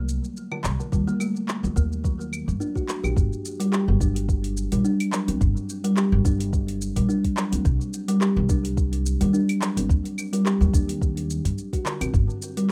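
A rough, dry home-demo sound frames this meditative, mystical organic downtempo fragment at 107 BPM in G harmonic minor, where a mellow, woody kalimba with tape echo plays arpeggios shaped by a filter sweep until 3.2 seconds, a thumpy pizzicato upright bass sits up front, an afro-pop drum kit adds claves, handclaps, metallic hi-hat and shaker in a small room, and a soft electronic kick enters at 0.9 seconds.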